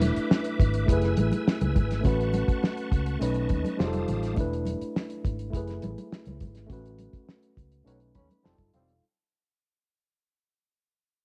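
Lush 1970s-style soul in a romantic mood, this short passage fades out across its whole length while moving through rich chords like F#m11, A69 and B9. A worn, slightly out-of-tune tine electric piano sits up front with a mellow, clean voice, adding fills around 3.5 and 7.9 seconds. Beneath it, a cloth-damped drum kit delivers a fat snare and tight kick with a dark, rolled-off top, while a foam-muted fingered electric bass gives round, punchy low notes. A reedy, bright tonewheel organ holds sustained chords through a fast rotary speaker with chorus vibrato and key click until 4.4 seconds. Thick-skinned, damped congas sit in the background, and a trombone section with soft attack and light vibrato adds faint jazz-style stabs from 7.9 seconds as the band accents the closing bars. The small-room home-cassette sound gives the whole piece an intimate, lo-fi warmth.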